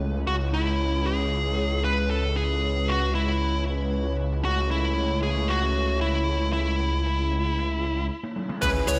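Nocturnal and nostalgic, this 115 BPM synthwave excerpt sets a dark, overdriven lead guitar with 12-bit grit and digital delay over a shimmering chorused pulse-width pad and a thick, detuned saw bass that both pump with sidechain, backed by a dry, compact cocktail kit, while a filter sweep moves through the pad on C#m7 and Aadd9/C#, until a stop at 8.1 seconds and a drum fill give way to fat, nasal synth brass stabs and a punchy electronic kick at 8.6 seconds, all in a bright 1980s-style digital production.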